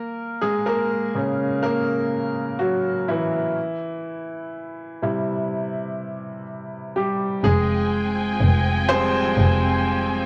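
Pop ballad in a longing, emotional mood, cut from a longer piece, opening with a clear, woody upright piano playing alone with long sustain and a cassette-tape tint over Gb and C chords. At 7.4 seconds a lush studio string section enters with smooth vibrato on bowed sustained chords, also carrying cassette color, while a dark, reedy double bass with a gut-string tone, bowed by one player, sits close and up front on a low F as the harmony settles on Fmadd9. The home cassette recording has light reverb and small room ambience.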